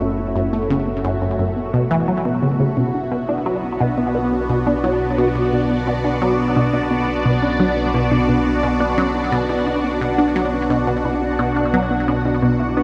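A straight 4/4 pulse at 87 BPM carries this cosmic, expansive stretch of sequencer-driven space music in B minor, cut from a longer piece and moving from F#m7 to Bm at 2.8 s. Up front, a squelchy, ring-modulated blip pluck repeats a resonant riff through phaser and delay, beside a thick, bright unison pad holding sustained chords with chorus and phaser, while a very quiet, wave-folded pluck plays arpeggios. Underneath, an evolving analog drone with pulse-width modulation and chorus anchors the bass, all set in a dark production with a lush 2.9-second hall reverb and some lossy compression artefacts.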